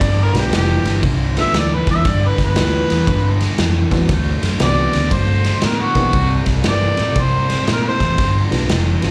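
A swung 4/4 shuffle at 118 BPM drives this rollicking, gritty electric blues excerpt in G mixolydian, with a saturated garage drum kit of punchy kick, medium-tuned snare and ride sitting up front, a round, foam-muted fingered bass underneath, and an overdriven semi-hollow guitar picking a riff through slapback echo; a woody upright piano with audible action noise enters in the background at 0.3 seconds, while a mellow harmonica solo with scooped notes, light vibrato, overdrive and slapback carries the melody until 8.4 seconds, the whole performance captured live at a club through the venue's PA.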